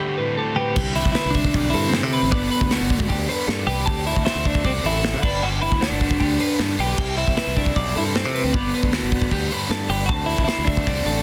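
A dense, heavily limited mix in a small room carries this bright, playful math rock and midwest emo excerpt, where a twangy, compressed twelve-string electric guitar plays the melody with slapback echo while another bright twelve-string spins high arpeggios and a double-tracked overdriven guitar drives a low riff. A warm, clean twelve-string with subtle chorus adds accompaniment only until 2.3 seconds. At 0.8 seconds a bright fingered bass and an up-front studio kit with punchy kick, medium-tuned snare, hi-hat, crash cymbal and a pumping room sound join in.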